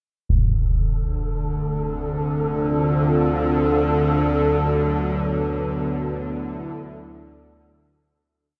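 Soaked in a huge, dreamy reverb with a cassette-tape haze, this short, desolate dark ambient drone piece drifts at 60 BPM, opening with low-passed concert bass drum hits at 0.3 seconds. A deep, moody analog pad with chorus holds slowly shifting chords from Dm7 to F#m, while a tense, string-like bowed drone sits up front in the low register and an airy, breathy wind-like noise texture sustains one high note on A4. From 4.3 seconds the whole piece fades out, ending just past 8 seconds.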